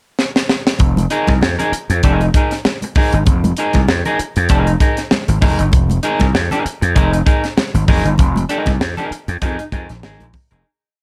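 Funk at 98 BPM in 4/4 with a swung sixteenth-note feel, this short, complete piece sits in F minor and carries a funky, hypnotic mood. A tight acoustic drum kit opens at 0.2 seconds with a fill through the pickup bar, its high-tuned snare and tight kick driving a sixteenth-note groove up front, before the full groove settles on a single Fm11 chord at 0.8 seconds. There the overdriven slap bass enters with a growly, punchy, syncopated riff anchored on the downbeat and dotted with muted ghost notes, while damped, thick-skinned congas play a syncopated pattern in the background. Electric guitar at the edge of break-up joins at 1.1 seconds with twangy, picked sixteenth-note rhythm work full of muted scratches, bathed in plate reverb. The whole piece sits in a small, lightly reverberant room, and a fade-out begins at 8.2 seconds and carries the groove to its close.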